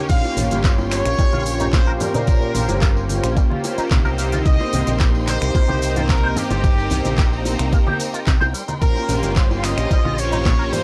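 A smooth, detuned analog pad and a lush, distant violin section open this groovy, sleek nu-disco excerpt in Bb dorian at 110 BPM, both pumping with sidechain compression beneath an up-front knocking electronic kick. A fingered bass with an envelope filter, a pop kit with crisp hats, snaps, handclaps and shaker, and soft-handed tambourine, bongos and congas fill out the groove, while a brilliant trumpet section carries the melody through tape echo. A twangy, clean electric guitar riff with an envelope filter enters at 0.4 s over chords moving from Bbm69 to Cm7, all captured in a dry, gritty cassette recording.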